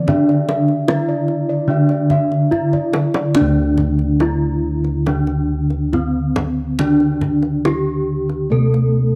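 Low bossed gongs with a round, saturated vintage tone anchor this serene Javanese gamelan excerpt in slendro, beneath a close-miked, dry bronze metallophone melody whose paired tuning gives it shimmering beats. A second, mellow metallophone struck with padded disc mallets fills in the accompaniment, while higher bossed gongs play arpeggios only until 3.4 seconds. The deep kendang ends that opening section with a hard-handed fill from 2.7 seconds, and a light small-room reverb colours the unhurried, straight-feel pulse.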